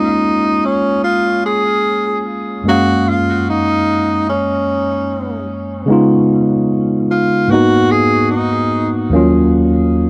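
Bittersweet and smooth, this reggae excerpt moves at an unhurried 74 BPM in 4/4, with a swung sixteenth-note feel that gives it a gentle lilt. A tine electric piano carries the accompaniment throughout, its worn, slightly out-of-tune tone sitting clean, direct and up front across a broad span of the keyboard. Over it, a tenor saxophone takes the solo melody in a pop style, its warm, vibrato-laden voice sounding roomy and distant yet still forward, with a tape echo trailing its phrases before it drops out at 8.9 seconds. The harmony drifts from A#m7 to F#maj7, then shifts at 5.9 seconds into a second section built on C#7, G#m7 and D#m7. The dry, close sound of a 1970s-style studio, touched by light reverb, gives the whole piece an intimate, vintage character.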